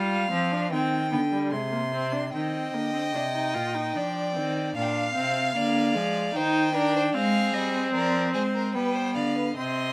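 In an unhurried, straight triple metre, this solemn, contemplative baroque-style fugue for string quartet unfolds as a short cut from a longer piece. A single bowed violin carries the melody from the start, its tone smooth and even with vibrato, while the viola supplies accompaniment with a focused sound and a silky upper edge, sitting up front. Beneath them, the cello holds the bass line, also placed forward in the balance, its bowed vibrato adding gravity. At 2.3 seconds a second violin enters with its own line just under the first, its playing concentrated and slightly softer in the mix. All four players share a rich, resonant string tone. Light reverb surrounds the ensemble as the harmony moves through minor and diminished colours before settling on a dominant chord near the close.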